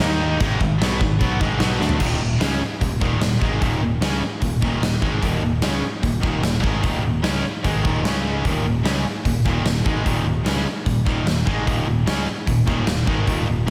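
An up-front big rock drum kit with a punchy kick and a medium-tuned snare drives this powerful, anthemic hard rock excerpt, firing a fill at 1.8 s, while three bright picked electric guitars (one compressed and distorted, two overdriven with slapback echo, one of them double-tracked) grind out a riff in the background over a growly fingered bass, all wrapped in a lush hall reverb for a big arena sound.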